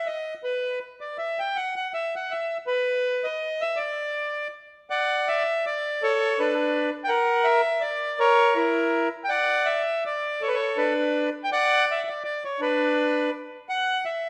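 A lightly swung waltz lilt drives this whirling, bittersweet musette excerpt, carried by a solo accordion with a reedy, boxy tone placed up front against the moderate reverb of a recital hall. After an unaccompanied opening phrase, the harmony settles at 4.9 seconds into a new section circling between Bm7 and F#7. The accordion plays on until the fragment breaks off at 14.3 seconds.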